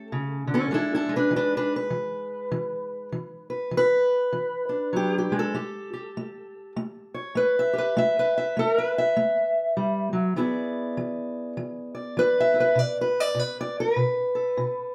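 Soulful and rollicking, this short acoustic country blues cut in E mixolydian swings along at 100 BPM as a lone fingerpicked steel-string acoustic guitar, dark and boxy with a parlour character, sits up front in a reverberant studio room, moving through A7, E7 and B7 chords from 0.0 to 14.9 seconds.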